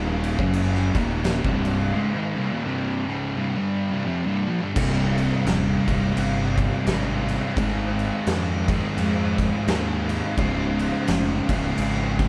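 Hypnotic and ominous, this swung stoner and doom metal fragment, cut from a longer piece and played live in one room with light reverb, pairs a bright, double-tracked distorted electric guitar with two thick fuzz guitar riffs, one dark and very quiet and one warm and distorted, the latter two set in the background, over a growly overdriven fingered bass and an oversized low-tuned drum kit that enters at 0.2 seconds up front with a boomy kick, fat snare, dark cymbals and a gritty, pumping room sound, with a break from 1.9 to 4.8 seconds before moving from C minor through Ab to Db.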